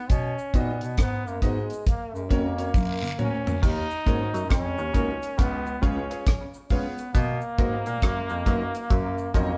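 A breathy, whispered trombone opens this serious, meditative stretch of roots reggae, carrying the melody with a light vibrato and a soft attack, and a bass clarinet with a distant, roomy, classical tone enters almost at once to hold down the low end. The slow 68 BPM groove in 4/4 swings on the sixteenths, driven by an acoustic, dry reggae kit that sits up front with a tight kick, hi-hat, rim click, toms and crash, while a faint cabasa and guiro add a touch of analog delay. A woody, slightly detuned upright piano plays stabs and a dark, clean, fingered electric guitar supplies accompaniment in the background. After a drum fill from 2.7 to 3.6 seconds, the harmony moves into a second section and a muted, nasal clav joins with an overdriven, hollow riff through a combo amp, also treated with analog delay. The band sounds as if playing live together in a stone room with moderate reverb, and the passage is cut from a longer piece.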